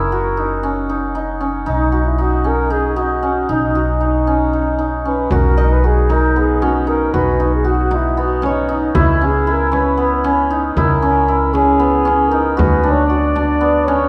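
Contemporary instrumental chamber music in an uneven 7/8 metre with a straight feel, this shimmering, restless passage is cut from a longer piece. A ringing hammered dulcimer sits up front, spinning arpeggios, while a woody pizzicato upright bass anchors the low end, and a breathy flugelhorn carries the jazz-style solo melody from a distance, its soft attack, light vibrato and scooped notes giving it a whispered, intimate quality. At 5.3 seconds a deep frame drum struck with hard hands joins in the background, and at 5.6 seconds a small fingerpicked nylon-string guitar adds a faint texture high above before falling away at 9.1 seconds. The harmony moves from F#7 to B, then on to C#m7 and Dmaj7. A dark production and the roomy reverb of a recital hall wrap the ensemble in a mellow glow.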